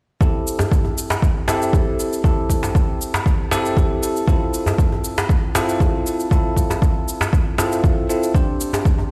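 Afro house at 118 BPM in A minor, this short excerpt cut from a longer piece feels driving and spiritual. A punchy, layered electronic kick sits up front and anchors the groove from 0.2 seconds, joined by a tape-tinged electronic shaker placed low in the mix. A tight, cracking djembe with metal rattles and soft hands enters at 0.6 seconds, its acoustic small-room character contrasting with the produced drums. Bright, bell-like tine electric piano stabs, clean and up front, sit in the range of C4 to C5, shaped by phaser, sidechain pumping, a low-pass filter and delay. The harmony moves from Am7 to Fmaj7/C and then to Csus2, and light stone-room reverb lends the whole a sense of being played on a big sound system in a bare room.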